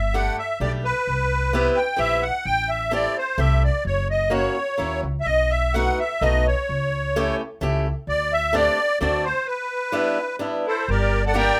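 A lilting three-beat waltz with a loose, rubato feel sets this nostalgic, charming musette excerpt in motion. Up front, the accordion carries the melody with a reedy, shimmering musette tuning. Close beside it, a boxy, picked swing-style acoustic guitar fills in the accompaniment, and a dark, woody pizzicato upright bass anchors the low end. The harmony drifts from Gsus2 through Cmaj7, Am7 and a run of dominant chords before resting on G6 at a break from 9.5 seconds. Just after, at 10.7 seconds, a single distant bowed violin slips in with a gut-string, period-style tone and light vibrato, shortly before the chords turn to Gm. A moderate studio reverb gives the room a gentle glow.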